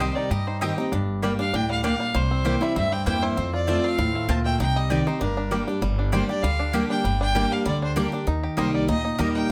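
A lightly swung 4/4 drive at 196 BPM carries this haunting G minor bluegrass cut, where a clear, earthy bowed fiddle with light vibrato sits up front beside a full-bodied picked jumbo steel-string guitar, a twangy fingerpicked banjo adds a second percussive melody line, a double-strung mandolin punches out woody stabs until 9.3 seconds, and a thumpy pizzicato gut-string upright bass anchors the bottom, all wrapped in a snug small-room reverb.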